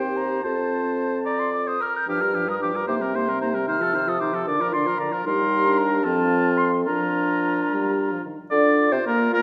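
Opening together at 0.0 s, a flute carries the melody of this graceful, spirited classical-period movement for wind quintet, a quick 6/8 in Bb major at 74 BPM (dotted quarters), its pure tone sung with expressive vibrato over a clear, up-front oboe second line, a warm clarinet and distant, mellow French horn in accompaniment, and a vintage-toned bassoon bass, all set in a wet recital hall as the chords move from F through Gm7 and Cm7 to a close on Bb, in an excerpt cut from a longer piece.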